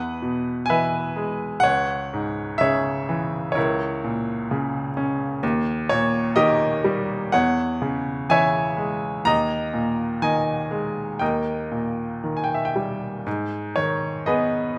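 In a rubato 4/4 that drifts between 57 and 65 BPM, this dark, wistful passage of lyrical classical solo piano unfolds over 14.8 seconds, cut from a longer piece. A bright, polished baby grand sits up front, ranging from C#2 to A#5 as it moves from E through C#m and suspended D# harmonies before settling on G#m at 13.3 seconds. A moderate recital hall reverb lends the playing a sense of space.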